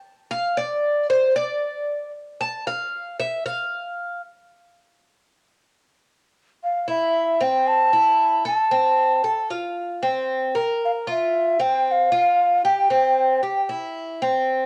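A Cuban tres opens this danceable Latin excerpt alone, picking metallic arpeggios on its doubled strings with plate reverb, up front at 114 BPM in a straight 4/4. At 6.6 seconds an airy, hollow bansuri enters with a mellow melody carrying vibrato and a crisp attack, colored by cassette tape, as the harmony moves through C6, Fadd11/C and a rootless Bbsus2 before settling on C. The whole has the feel of a home cassette recording in a wet studio room, with the tres ringing on until 14.7 seconds.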